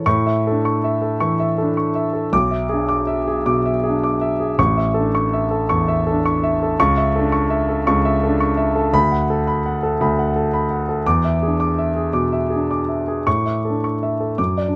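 Moving with a flexible rubato in 4/4 at roughly 97-115 BPM, this romantic classical character piece for solo piano unfolds in A major with a warm, hopeful mood, its harmony passing from A through E7/B, A/C# and Bm7/D to E7 before settling back on A at 13.3 seconds. The grand piano sounds intimate and up front, spanning A1 to D6 with long sustain and audible action noise picked up by close, detailed microphones. A light reverb gives the natural tone a little space across this 14.8-second passage cut from a longer piece.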